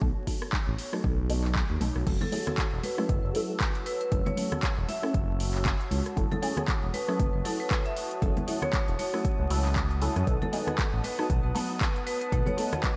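An overdriven electronic kick drum sits up front in this deep, warm deep house excerpt at 117 BPM in F# dorian, with a 16th-note swing. A muted, nasal dub chord stab runs through a filter sweep across the whole passage, colored by phaser, analog chorus, sidechain pumping and a diffuse ambient delay, while a smooth, gliding sawtooth bass with vibrato holds the low end until 12.4 seconds. A punchy analog drum machine adds crash cymbal, handclaps, hi-hat and rim click from 0.3 seconds, and a faint, warbling tape-like pad lends a nostalgic lo-fi haze beneath. At 2.1 seconds the harmony moves from B7 to F#m7 as an airy, breathy pad enters with chorus, 12-bit sampler grit and pumping, joined by a bright, delayed marimba melody struck with hard mallets and ringing, close, dry congas. The chords return to B7 at 10.3 seconds, and the dreamy mix is soaked in a lush hall reverb with a layer of vinyl crackle.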